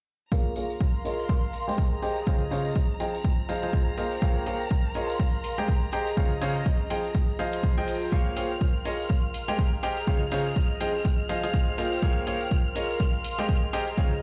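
Driven by a punchy electronic kick up front at 123 BPM in 4/4 with a 58% swing on the sixteenths, this soulful, energetic piano house excerpt in Bb dorian sets a smooth, deep-bodied concert grand piano riff, shaped by a filter sweep, digital delay and sidechain pumping, over Bbm7, Abmaj7, Dbmaj7 and Fm7 chords, joined by a rich chamber violin section holding high, vibrato-laden sustained chords, an airy, breathy chorused pad that enters at 0.8 seconds, both also pumping, a low-passed analog hi-hat in the background and a vintage, band-limited tambourine, all played through a big sound system in a bare stone room.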